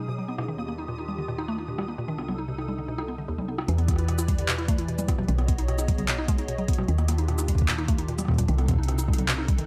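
A mallet-like FM synth pluck, woody and nasal with a percussive noise layer, runs intricate arpeggios through this glitchy IDM excerpt, its tone thickened by chorus and echoed by delay. Beneath it a hollow, flute-like pad holds sustained chords that warble with vintage ensemble chorus and pump against a sidechain, moving through changes such as D#maj7, Cm6 and Em7. A flickering, grainy granular texture hovers high above with built-in reverb until 3.7 seconds, when the second section begins and a soft, round FM bass enters with a dark, decaying tone. A booming analog drum machine comes in at 0.4 seconds with cabasa, handclaps, metallic hi-hats, rim clicks and toms, all muffled by low-pass filtering, and an overdriven electronic kick joins at 3.9 seconds, the loudest part of the mix. Both drum parts carry the boxy character of a small room, and a light reverb glazes the whole piece, which is cut from a longer work.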